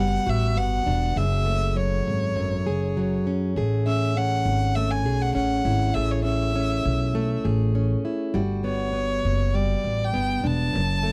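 A rich, smooth violin sings the melody over fingerpicked plugged-in steel-string acoustic guitar and a woody pizzicato upright bass, all three entering together at the start of this sunny, easy-going pop excerpt at 100 BPM with a light swing on the sixteenths. The chords move from Gmaj7 through F#madd9 and Amaj7 before returning to Gmaj7 at 8.3 seconds, the bowed violin carrying an even vibrato while the bass stays low and warm. The sound is dry and close in the manner of a 1970s studio, with every instrument placed up front.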